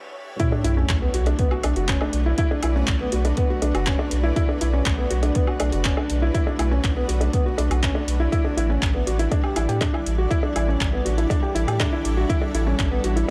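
A soft, felt-muted upright piano with audible action noise plays an intimate riff through a digital delay over a blurred, detuned granular cloud pad that pumps to the sidechain, a round sine sub bass that pumps with it, a layered electronic kick and a tape-warm deep house kit of handclaps, metallic hats and woodblock in small room ambience, while a very quiet sub drop marks the drop from 0.4 to 2.4 seconds in this hypnotic, moving piano and strings electronica excerpt with a dark production.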